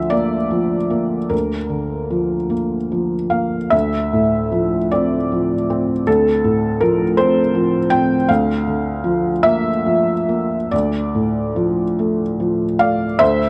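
Lightly reverberant and intimate, this short cut from a longer neoclassical minimalist piano piece features a solo felt-muted upright piano, soft and up front, drifting with rubato in 6/8 across a wistful, reflective cycle of Bb/D, Dm7, Bb/D and Dm chords over its 13.5 seconds.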